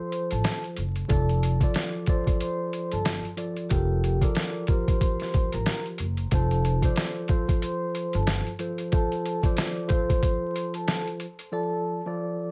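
Vinyl crackle and light reverb frame this confident, soulful boom-bap hip-hop excerpt, which has a swung sixteenth-note feel. Up front, a gritty, compressed, pitched-down sampler-style kit pairs a thumpy kick with a medium-tuned snare and hi-hat, while a woody pizzicato upright bass holds the low end until 8.4 seconds. Alongside them, a clean, mellow tine electric piano with cassette tape coloring carries the chords, and a ringing, metallic vibraphone played with soft mallets sings the melody through a slow motor vibrato.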